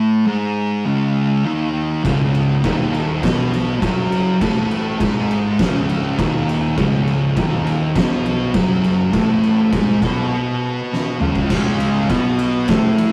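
Sludgy and brooding, this short excerpt of stoner and doom metal at 102 BPM opens with two thick fuzz guitars up front riffing on a C#5 power chord, joined at 2.0 seconds by a growly picked bass sitting in the background and an oversized low-tuned drum kit with a fat snare, punchy kick, toms, crash and ride, before a break and drum fill lead at 11.5 seconds into a bright, double-tracked overdriven guitar riff, all captured in a rough rehearsal-room recording with small room ambience.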